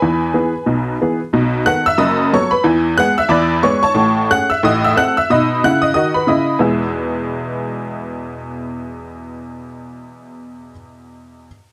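A dark production with moderate studio reverb frames this swinging, playful stride jazz passage, cut from a longer piece. A lone honky-tonk upright piano carries everything from 0.0 to 11.5 seconds, its detuned, jangly, vintage tone sitting bright and up front across a span from deep bass to high treble. The harmony moves through a lively progression, including a turn from Amaj7 to Am, before a new section arrives at 6.6 seconds.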